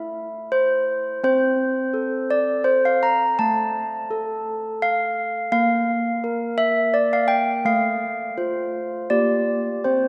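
A solo set of handbells opens this short classical excerpt, their clear, bell-like tones ringing up front with a mellow softness from soft clappers. The tune moves in an unhurried three-beat metre, at once festive and serene, with chords drifting from A minor through F over A and settling on G minor seventh over B-flat near 9.1 seconds. A wet church reverb surrounds the bells with a long, spacious tail.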